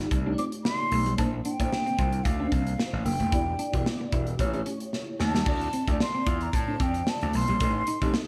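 Polished and lightly roomy, this short cut from a longer piece is upbeat, urban 1980s jazz-funk pop with a gentle swing on the sixteenths. Gritty, overdriven slap bass and a punchy studio drum kit with gated reverb sit up front, while a bell-like FM electric piano sparkles through phaser and ensemble chorus over extended chords such as F13 and Bbmaj9#11, and a dark, slightly broken-up electric guitar riff shimmers in the background under lush chorus. A breathy, hollow concert flute carries the melody from 0.4 s through digital delay, and a drum fill breaks in at 4.9 s.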